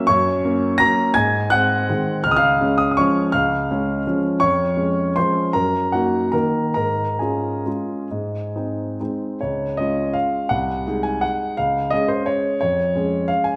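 Classical piano waltz in D-flat major, playful and elegant, moving in 3/4 with a flexible rubato between 132 and 185 BPM in this short section cut from a longer piece. A solo concert grand carries it all from C2 up to Bb6, its warm, intimate tone placed up front with deep bass, long sustain, a natural sound and audible action noise, all set in a wet recital hall reverb. The harmony circles through G-flat, A-flat seventh and D-flat chords, and a new passage begins at 9.4 seconds before the clip closes at 13.6 seconds on D-flat over F.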